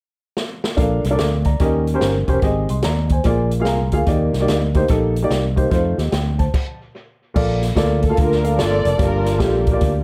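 A swinging big-band drum kit opens with a fill at 0.4 s, kicking off a soulful, reverent uptempo gospel excerpt in Bb major at 146 BPM with a swung feel, where a punchy, amped fingered electric bass and a mellow, intimate baby grand piano with audible action noise carry the chords, the piano adding a brief fill and the band hitting a stop at 6.5 s, before a lush, woody bowed string section with vibrato takes the melody from 8.0 s, the drums and strings touched by tape echo in a spring-reverb-tinged small room.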